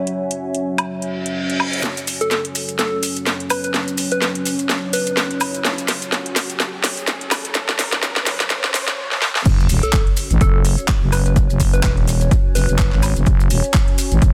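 Gritty and swaggering, this bass house cut, taken from a longer piece, rides a swung groove in four. A deep, detuned analog pad holds moody sustained chords through chorus, phaser and sidechain pumping, while a lo-fi, nostalgic tape-like pad warbles in the background under its own reverb. A tape-toned garage drum kit sits up front with a cracking snare, metallic hats, handclaps, woodblock and crash, filtered at the opening before a reverse cymbal leads into a build-up at 1.8 s, where close, grainy maracas join, a drum fill rolls and a riser climbs, and a filter sweeps the analog pad. Over this, a round, keys-like FM lead with a vintage, warbling character strikes gentle, decaying notes in two short phrases, coloured by chorus and digital delay. At 9.5 s the drop hits with an impact and sub drop, bringing in a punchy layered electronic kick and a thick, growling FM bass driven by tube saturation and sidechain pumping. 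The whole track has light reverb and a dense, heavily limited modern master.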